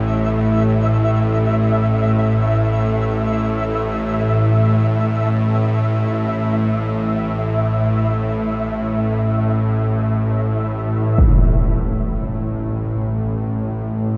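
Dark ambient drone in free time, tuned to A4 = 438 Hz and cut from a longer piece, with a desolate mood: a tense, nasal, string-like bowed drone sits up front from A1 to A2 with vibrato and its own reverb, a deep, moody analog pad with chorus holds sustained chords in the background and fades out over the first 11.2 seconds, a flickering, grainy texture on E5 sustains with a mellow tone until a huge, bright, low-pass-filtered impact strikes at 11.2 seconds, all inside a cavernous 7.5-second reverb.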